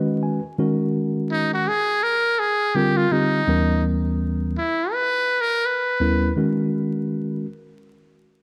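A short tine electric piano fill opens this mellow, smoky hip hop excerpt at 0.0 s, setting an unhurried 83 BPM groove in 4/4 with a lazy swing on the sixteenths in G# minor. The electric piano sounds worn and slightly out of tune, sitting clean and up front as it carries the accompaniment through suspended and extended chords, drifting from G#sus2 to A#69 and a tense D#7b9b13 before settling back. A trumpet with a metal mute takes the jazz-style solo from 1.3 s, its tone buzzy and thin yet brilliant and breathy, with scooped notes and a light vibrato in a fairly narrow middle register. Light reverb and a small room ambience give the pair some air. A dark production with a faint vinyl crackle adds a dusty, late-night haze.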